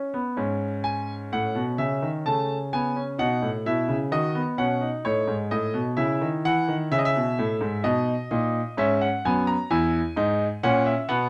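A straight 4/4 pulse at 65 BPM carries this solemn, contemplative passage, cut from a longer baroque-style three-part fugue in C# minor, tuned to A4 = 441 Hz. A concert grand piano plays solo from 0.0 to 11.3 seconds, spanning E2 to A#5 with a clear, open and up-front tone and a deep bass, set in a light reverb. The harmony moves from C#m/G# through A/C#, D#m7b5 and C#m to G#m, settling on E.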